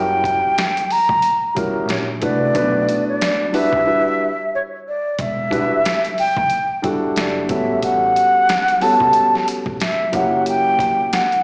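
Jazz-hop with a smoky, nocturnal mood, this short cut from a longer hip hop piece moves at 91 BPM in 4/4 with a swung sixteenth-note feel in E dorian. A breathy, mellow concert flute carries the melody up front, its vibrato and crisp attack softened by rolled-off highs and a slapback echo. Beneath it, a dark baby grand piano with long sustain plays vintage-toned chords from F#7b9 through Bm7, Em9 and A13, also touched by slapback echo. A woody pizzicato upright bass on gut strings sits low in the mix, while a gritty, pitched-down boom bap drum kit with a thumpy kick and medium-tuned snare enters at 0.2 seconds, sounding compressed and re-recorded in a large room. A break arrives at 3.9 seconds before the phrase repeats at 5.2 seconds. The whole mix has the feel of a live gig heard through a venue's PA, with recital-hall reverb and a small-speaker quality.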